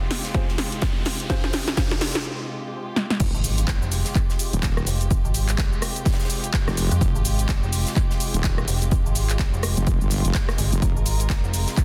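A swung sixteenth-note groove in 4/4 drives this swaggering, gritty bass house excerpt. A punchy electronic kick, a house kit of crash, handclaps, hats, rim click, shaker and snare, and a very quiet, airy gated 80s kit with hi-hat and snare run together, while dark, sul tasto chamber strings hold pumping sustained chords and a warm, very quiet baby grand piano plays brief stabs near the start. A background riser builds before the drop lands with an impact at 3.2 seconds, bringing in a saturated, chorused wobble bass and a metallic, overdriven FM bass, both pumping, in a dense, heavily limited mix with light reverb.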